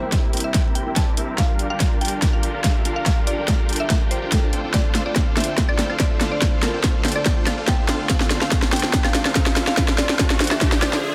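Lightly reverberant and cut from a longer piece, this emotional, bittersweet future bass build-up at 143 BPM in a half-time 4/4 feel sits in D minor over C7, Gm7 and Dm7: a thick, airy, detuned supersaw riff with sidechain pumping runs under a filter sweep, a woody, round FM pluck carries the melody in the background with chorus and delay, very quiet bowed strings hold sustained chords, a deep, very quiet sine 808 bass sits beneath, a tape-warm dubstep kit with a huge snare, bright hi-hats and woodblock plays a fill throughout over a distorted electronic kick up front, and a faint riser enters at 7.6 seconds.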